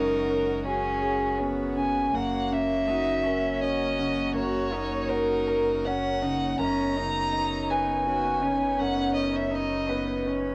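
Neoclassical piano and strings in a tender, intimate mood, moving at 81 BPM in 3/4 with a rubato feel and set in F# mixolydian. A dark, woody violin carries the melody up front with vibrato, its tone passed through cassette tape, while a rich cello bowed sul tasto adds a nasal, floating second line beneath it. A felt-muted upright piano supplies soft, mellow accompaniment with a vintage, thin felt character, and a chamber string section holds sustained chords in the background with light vibrato. A round sine sub bass rests on a deep F#1 throughout. The harmony moves from F#sus2 to F# at 2.1 seconds and then to Badd9/F# at 6.6 seconds, all captured as a home recording on cassette in a booth with moderate ambience, cut from a longer piece.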